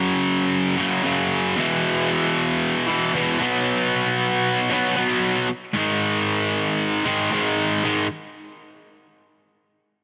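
Rock in G# minor at 115 BPM in a straight 4/4, this dark, brooding passage is cut from a longer piece. A lone distorted electric guitar carries it, playing solo from 0.0 to 8.1 seconds across a range from E2 to C#4. Its tone is bright and overdriven, with a picked attack and a double-tracked sound placed up front in the mix. The harmony moves through F#5, E5, B5 and G#5 power chords, shifting to a new section at 7.8 seconds. Light reverb and a digital ambience frame the guitar, and the dense, heavily limited modern master keeps the sound packed and forceful.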